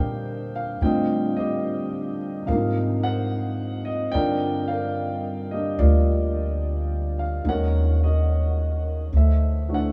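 A concert grand piano with an intimate, vintage tone and audible action noise and a woody pizzicato upright bass open this tender, late-night jazz ballad together and play throughout, swinging gently at 72 BPM in 4/4 through lush changes such as Eb69, Ab9 and Gm7 before settling on D9 near 9.1 seconds, all set in a huge ambient reverb that places the listener further back in the room.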